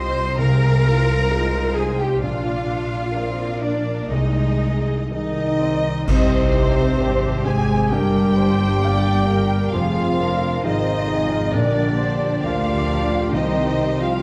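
A moving, longing cinematic film score fragment with a rubato feel, where lush, vibrato-laden violins carry the melody over a softer second violin line, intense viola and a dark, intimate concert grand piano accompaniment, ringing harp arpeggios and a rich, even cello and double bass foundation, with airy, distant flutes, a roomy solo clarinet and mellow French horn chords joining at 5.1 s, a close, dry crash of cymbals and concert bass drum marking an accent at 6.1 s, and very quiet timpani arriving at 13.3 s, set in a moderate scoring-stage reverb.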